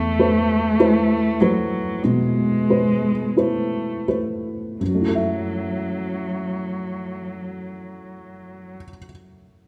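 A felt-muted upright piano sits up front with a boxy, thick-felt tone that is dark and intimate, its action noise audible, in this fragile, melancholic neoclassical fragment in F# minor, tuned to A4 = 444 Hz. Beside it, a single bowed cello plays con sordino, veiled and soft in attack with light vibrato, carrying a second line until 8.8 seconds. The rubato pulse of 41-50 BPM in 4/4 slows over the first 4.8 seconds as the harmony moves from Esus4 to F#m7, set in a wet concert hall reverb.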